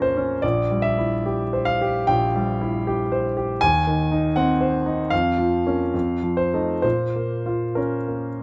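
Brooding and stormy, this short excerpt of a romantic classical character piece for solo piano unfolds with free rubato in 4/4, its clear, natural grand piano placed up front by close, detailed microphones in light reverb, ranging from the deep bass to the upper register as a dark harmony settles onto a minor chord at 6.8 seconds.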